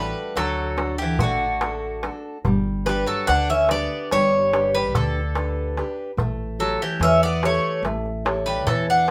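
A moderate studio reverb gives this short Greek folk recording a natural sense of space, with the lead bouzouki sitting up front. The mood is warm and calm, moving in 9/8 with a straight feel. A bright, metallic bouzouki carries the melody on its doubled and partly octave-doubled strings, while a second, mellower bouzouki picks a lower supporting line beneath it. A dark, woody steel-string acoustic guitar with old strings supplies picked accompaniment, and a pizzicato upright bass adds warm, woody low notes. A crisp metal-shell darbuka, close and dry and played with soft hands, joins at 0.4 s. The harmony rests on D before moving to G at 2.4 s and A7 at 6.2 s, all within a single section cut from a longer piece.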